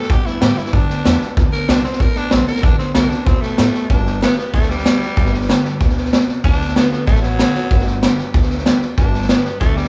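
Upbeat and rowdy, this short rockabilly cut from a longer piece drives along at 189 BPM in G major with a straight 4/4 feel. A growling tenor saxophone carries the melody with a raspy, breathy edge and light vibrato, sitting present in the mix as a soloist. Underneath, a picked steel-string acoustic guitar adds full-bodied accompaniment from the background, with audible finger squeak. The upright bass enters at 0.1 seconds, its woody, thumpy gut-string tone anchoring the low end, while a vintage drum kit sits up front with a punchy kick, a high-tuned snare and hi-hat, its top rolled off. The band sounds like it's playing live together in one room under light reverb, moving from a short opening section into a second one at 3.9 seconds over a simple G and D7 progression.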